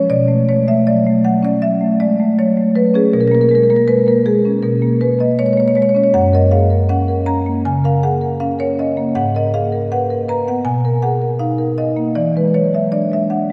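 A woody, up-front marimba played with medium mallets on rosewood bars carries this playful contemporary classical solo excerpt in F# major at a rubato 80 BPM in 4/4, ranging from F#2 to A#5 through chords such as Bsus2, F#, Bmaj7 and E9, all bathed in a wet church reverb with a long 4.0-second tail.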